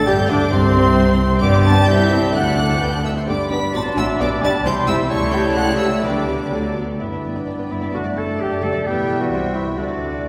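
In a quick 2/4 at 130 BPM with a flexible, rubato feel, this lively, graceful classical-period orchestral passage in G major, cut from a longer piece, has a clear violin section singing the melody with vibrato above lush second violins, a hollow flute section, a mellow solo oboe and a distant clarinet carrying second lines. Violas and a warm solo bassoon fill out the accompaniment, cellos and double basses supply the bass, dark French horns hold sustained chords in the background, and a mellow trumpet section adds stabs. Very quiet timpani enter at 0.5 s and return at 6.0 s, and the whole band sits further back in a reverberant concert hall, moving from the opening section into a new one at 7.0 s.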